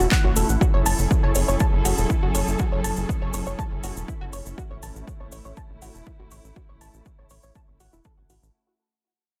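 A punchy, overdriven electronic kick sits up front in this melancholic, hypnotic melodic techno excerpt at 121 BPM, joined by an overdriven house kit of handclaps and metallic hi-hats that pump against the sidechain, with grainy cabasa in the background. A tight sawtooth-and-square sequencer bass with tube saturation drives underneath, while a nasal, filter-plucked synth arpeggio with chorus and digital delay rides over dark, veiled con sordino strings holding sustained chords through A, F#m7 and back to A. The dense, heavily limited mix carries light reverb and fades out across the full 8.5 seconds.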